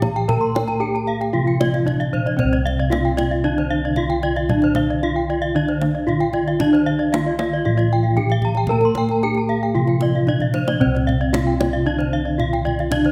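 A straight 4/4 pulse at 114 BPM drives this short cut from a longer Balinese gamelan piece in C slendro, with a shimmering, brilliant mood. The bossed gongs sit up front in the bass, their round, mellow tone struck with padded beaters, while the kendang adds tight, close and dry strokes from hard hands, including a brief drum fill at 10.3 seconds. The lead bronze metallophone carries the melody with a ringing, vintage, band-limited sound from a horn mallet. Beneath it, a lower metallophone plays accompaniment in the background, soft and struck with padded disc mallets. Two bright, close-miked metallophones weave arpeggios higher up, full and dry, with one stopping at 12.9 seconds just before the rest end at 13.1 seconds. The paired tuning gives all four metallophones shimmering beats, and a moderate recital hall reverb surrounds the ensemble.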